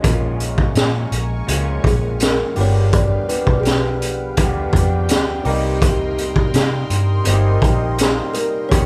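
A gritty, punchy garage drum kit sits up front in this mellow, hazy indie and bedroom pop piece at 83 BPM in 4/4, joined by a round, foam-muted fingered electric bass, a dark, slightly broken-up electric guitar with vibrato through a small old amp, a woody, slightly detuned upright piano kept very quiet, and a swirling phased analog pad with chorus holding sustained chords over Bbm7, G7 and Cm7, while a ringing, boxy kalimba carries the melody in the background from 1.9 s, the band heard playing together in a large studio room with moderate reverb.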